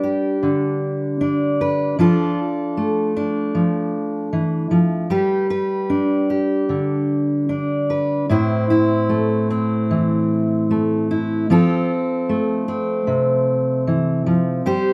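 A full-bodied, up-front fingerpicked dreadnought steel-string acoustic guitar with fresh strings, tuned to A4 = 435 Hz, plays alone in this gentle, pastoral folk excerpt at a rubato 76 BPM in 4/4, moving through G, Dm/F, G, Am and F across a single 14.9-second section, its notes ringing in a moderate large-studio reverb.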